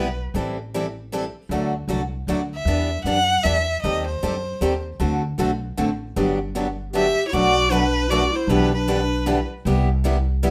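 A bright, picked steel-string acoustic guitar and a second steel-string guitar open together with a woody, thumpy pizzicato upright bass on gut strings, setting up a playful, swinging jazz manouche groove in 3/4 at 155 BPM. The clear violin appears only briefly at the start, then returns at 2.5 seconds with a focused, close, bowed melody sung with vibrato, sitting up front alongside the bass and the first guitar, whose fresh strings and dreadnought body bring full tone and an audible finger squeak. The harmony moves through chords such as Am7, Em7, Cm6/Eb and Gmaj7 before shifting into a new section at 7.3 seconds built on Bm7, Em7/B and Cmaj7. Around 6.9 seconds a breathy clarinet enters with a dark, subtoned second line, its soft attack and scooped notes sounding distant and whispered in the room beside the violin. A moderate studio reverb gives the ensemble a natural space in this short cut from a longer piece.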